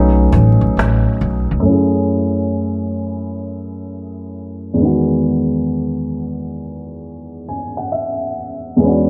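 Swung 16ths at 67 BPM in 4/4 set up this dreamy, nostalgic lo-fi hip hop excerpt in E major, where a hard-handed, woody cajon with faint snares, a warm pizzicato upright bass up front, and a dark, mellow upright piano tinted by cassette tape sit under a very quiet, ringing soft-mallet vibraphone that touches B4 before stopping at 1.0 s, and from 1.7 s the piano plays alone through F#m9 to Emaj9 under a filter sweep, the whole mix softened by spring reverb and vinyl crackle.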